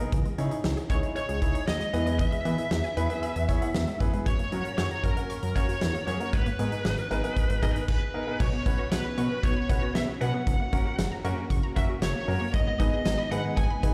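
Nocturnal and melancholic, this synth-pop excerpt at 116 BPM pairs a huge, punchy arena drum kit and a fat, detuned analog bass with a clear baby grand piano that adds fills, a squelchy, resonant blip pluck arpeggiating in the background through chorus and tape echo, and a smooth, bright overdriven lead guitar carrying the melody from 0.9 seconds, before a brief stop at 7.9 seconds gives way to a vintage, warbling string machine of violas holding sustained chords from 8.4 seconds, all set in a large studio reverb.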